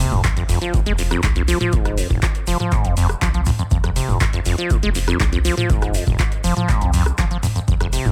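A sub drop lands at the very start of this gritty, raw acid house cut, sounding beneath a squelchy, resonant acid bass riff on a sawtooth tone with a filter sweep, phaser, tube saturation and digital delay, placed up front in the mix. Under it, a round, dark analog bass built from detuned sawtooth, sine and triangle waves sustains low notes, pumping against the sidechain. A grainy, mellow tube shaker sits close and dry in the background. The booming analog drum machine enters at 0.1 seconds with handclaps, metallic hi-hats, rim clicks and toms, and a deep, tape-warm electronic kick drum joins at 0.2 seconds. At a straight 121 BPM in 4/4, this short excerpt stays on F minor throughout, and digital ambience lends the sound some space.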